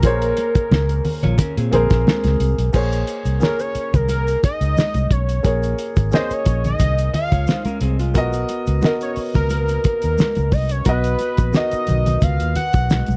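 A dry, close 1970s-style studio sound frames this lush, cinematic and silky soul excerpt at 89 BPM in Bb phrygian, where a fat, detuned sawtooth analog lead with vibrato sings the melody over intimate grand piano with audible action noise, a round foam-muted electric bass, a cloth-damped thuddy drum kit with dark cymbals and a fat snare, and very quiet high-tuned congas, while a slightly broken-up electric guitar through a small old amp drops in short riffs at 1.2 and 7.1 seconds, a grainy tube shaker sits in the background from 2.7 seconds, and the harmony moves from Bbm9 to Bmaj7 at 8.2 seconds.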